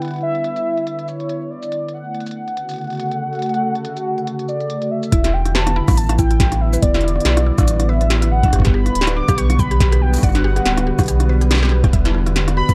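A dark, lightly reverberant digital ambience frames this eerie, glitchy IDM excerpt in E dorian, swinging at 141 BPM, where a velvety, detuned sawtooth lead with vibrato, chorus and dub echo carries the melody over a hollow, flute-like square-wave pad that pumps against the sidechain, while an overdriven industrial kit of clanging snare, crisp low-passed hats, rim click and shaker clatters beneath. At 5.1 seconds the harmony moves to Em7 and the low end fills in with a round, sine sub bass up front and a gritty, pitched-up sampler kick with a thumpy, tape-tinged body. A woody FM pluck sits in the background there, its bright mallet-like arpeggios colored by phaser, chorus and dub echo.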